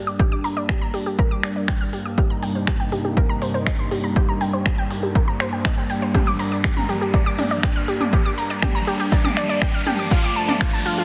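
A straight 4/4 pulse at 121 BPM drives this cinematic melodic techno build-up in G minor, where a punchy, up-front electronic kick and a layered, tape-warm techno kit of finger snaps, smooth hats, shaker, toms and a softly clipped snare push beneath a bright, detuned unison pluck arpeggio with tape echo and a filter sweep, over a mellow, chorused analog pad pumping on Gm, Cm7 and Dm chords, a dark, evolving analog drone on G2, a round analog bass that is barely audible, and a background riser entering at 0.9 seconds, all set in a lush hall reverb under a dense, heavily limited master.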